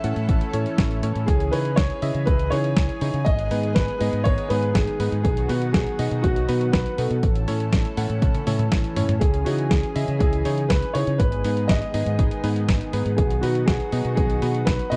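Danceable and bittersweet, this italo disco excerpt moves at 121 BPM in C# minor, with a dark, boxy grand piano carrying the melody through tape echo over a lush, detuned unison pad with chorus and clangy electric grand piano stabs, cycling through A, C#madd9, G#m and B. A bright, envelope-filtered fingered electric bass and a gritty, compressed sampler-style kit of hi-hat, snare and toms drive the groove, joined by a punchy analog electronic kick from 0.3 seconds, with a drum fill at 8.2 seconds. The sound is a dry, close 1970s-style studio recording touched by digital ambience.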